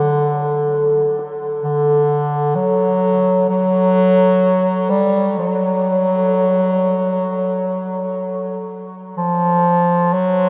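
A slow, straight 4/4 pulse at 63 BPM underlies this dark, cavernous ambient piece, cut from a longer work. A clear, punchy bass clarinet carries the melody in a classical style from 0.0 to 10.5 seconds, staying low between D3 and G3 and sitting up front with a vintage character. Alongside it and more softly, a quartz singing bowl struck with a felt mallet plays arpeggios on A4 until 5.4 seconds, its pure, ringing tone mellow and meditative, with a slow beating in the sound. Both parts carry tape echo, and the whole is bathed in a huge, wet reverb with a decay of 7.8 seconds that gives the space its cavernous depth.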